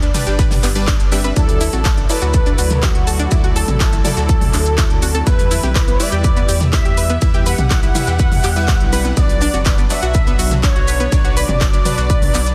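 A straight 4/4 progressive house groove, expansive and hopeful, rides on a punchy, up-front electronic kick with small room ambience, a deep house kit of handclaps, smooth hats and shaker, a very quiet damped 70s kit with a dry, fat snare, and background electronic toms and congas. A round analog bass, a detuned analog pluck playing arpeggios and a background supersaw stab each pump with sidechain. From 1.4 s an expressive portamento lead with vibrato and cassette-tape colour carries the melody over a clear chamber violin section. At 2.1 s a very quiet, evolving wavetable pad joins in, and the mix sits under light digital reverb in a dense, heavily limited master.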